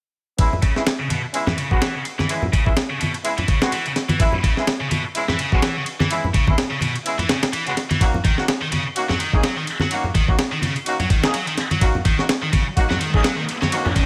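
A light reverb surrounds this funky, energetic breakbeat excerpt. It runs at 126 BPM in 4/4 with a 56% swing on the sixteenths, in C# dorian. The sampler-style drum kit sits up front, compressed, pitched up and gritty, with a thumpy kick, a medium-tuned snare, a ride cymbal and a tape-warm glow. Low-tuned congas with a thick skin and soft hands fill in from a small room. A bright, heavy high-gain guitar is double-tracked and up front, playing a picked, distorted riff roughened by 12-bit sampler grit, a low-pass filter and delay. A clear, distant jazz-style horn section adds roomy ensemble stabs with the same grit, filtering and delay, while the harmony moves from C#m7 to D#m7/C# at 8.0 seconds and an electronic riser builds in the background from 12.6 seconds.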